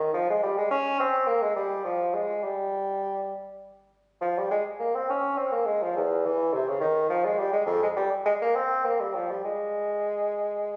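Captured on a phone in a reverberant recital hall with a faint mains hum beneath it, this short excerpt from a baroque-style classical fantasia features a solo bassoon, punchy and touched with light vibrato, unfolding an introspective, solemn line in a loose, rubato 6/8 for about 10.8 seconds.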